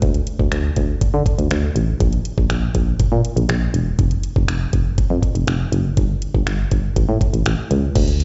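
Heard through a venue's PA at a live gig, the sound carries a recital-hall ambience and a dull top end that stops at 7.8 kHz. This short, bittersweet yet energetic dance-pop passage in D minor moves at 121 BPM in a straight 4/4. A solid, punchy FM bass with a round, mellow digital tone and fast-attack, decaying notes pumps from the sidechain up front, while a produced electronic R&B kit of knocking kick, metallic hi-hat, finger snaps and crash cymbal sits close alongside it, both playing throughout.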